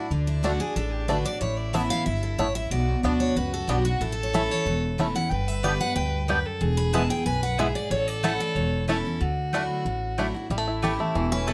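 Driving and virtuosic, this bluegrass excerpt sets a bright, full-bodied jumbo acoustic guitar carrying the picked melody over a dreadnought guitar's accompaniment, twangy fingerpicked banjo arpeggios up front, a growly, thumpy upright bass, and a smooth, focused fiddle second line with light vibrato, while a woody, double-strung mandolin adds stabs from 5.6 seconds, in a close, detailed recording with light reverb.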